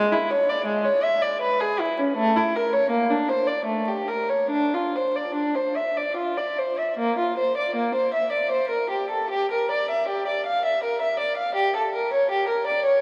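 A cavernous cathedral reverb, lingering for about 4.7 seconds, surrounds this dark, warm recording, with a faint vinyl crackle beneath it. A single bowed violin carries this brief fragment of a baroque-style suite movement, grave yet flowing in an unhurried 3/4 at roughly 66 to 83 BPM, shaped with free rubato. The gut-string tone is nasal and reedy in a period style, ranging from G#3 up to F5 and sitting close to the listener. The opening phrase runs for 7.0 seconds and then returns in a second statement that carries the piece through to 13.0 seconds. The tuning rests slightly above standard pitch, at A4 = 441 Hz, lending the solo line an old-world character.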